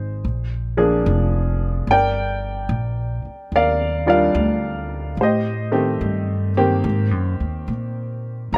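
Jazz ballad at 73 BPM with swung eighths, romantic and late-night in mood, in which a smooth, vintage upright piano with short sustain accompanies through chords such as Ebmaj9 and Ab9 while a woody, growly pizzicato upright bass on steel strings holds the low end, both up front and playing throughout this dry 8.6-second fragment of a longer piece.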